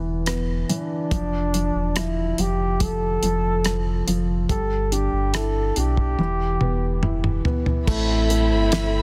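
A felt-muted upright piano and a deep, sine-like sub bass open this heartbroken pop ballad fragment, joined almost at once by a dry, damped 70s drum kit with a fat, softly clipped snare and a tight kick. A breathy, dark flugelhorn carries the melody in a jazz style with light vibrato, scooped notes and tape echo, sounding distant and roomy. After a drum fill from 6.2 seconds, a lush, bowed string section enters at 7.9 seconds with expressive vibrato, beneath a dense, heavily limited modern master.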